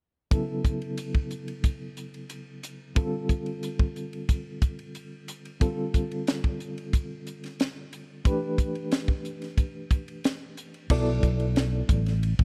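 A dry, close 1970s-style studio sound with small room ambience frames this driving, funky electric jazz fusion excerpt at 91 BPM in straight 4/4, where a reedy, clean electric piano with fast tremolo moves from B9sus4 through Dm7 and Em7 over a crisp, airy drum kit with a high-tuned snare and punchy kick, until a punchy, amped fingered electric bass enters at 10.9 s on a Bm7 chord.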